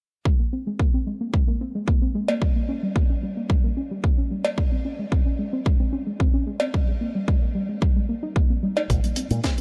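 A cut from a longer nu-disco track with light studio reverb and lossy artefacts, it feels cosmic and sensual in a straight four. A soft, full-bodied pluck with chorus, tape echo and sidechain pumping spins arpeggios over a punchy, up-front electronic kick from 0.3 seconds, and a cowbell joins at 2.3 seconds. At 8.9 seconds a dark fingered bass with an envelope filter and a tight funk kit with a high-tuned snare and hi-hat arrive briefly as the chords turn to Bb7sus2.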